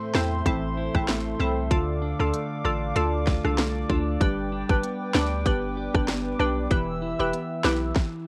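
A tight, swung 96 BPM dancehall groove in A minor drives this sultry, tough fragment: an up-front electronic kit with a tight kick, sharp snare, rim clicks and crisp hats carries a cassette-tape grit, a deep, boomy 808-style bass sits beneath glassy, crystalline wavetable plucks and a hollow, flute-like pad that both pump with sidechain, and a clean, picked electric guitar arpeggiates through a phaser over Am, Dm, G and Em, ringing on until 8.3 seconds, just past the other parts.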